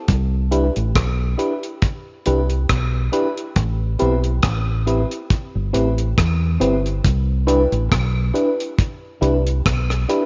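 Tender and sweet, this lovers rock reggae excerpt sways at 69 BPM in C major with a gentle 16th-note swing, moving from Cmaj7 to Am7 at 3.6 seconds and back to Cmaj7 at 7.0 seconds. A dark, punchy fingered electric bass sits up front alongside a dry acoustic drum kit of hi-hat, tight kick and rim click. A soft FM electric piano enters at 0.5 seconds with fast-attack, decaying tones, a noise layer, chorus and slapback echo, all set in light studio reverb with a mellow, rolled-off top end.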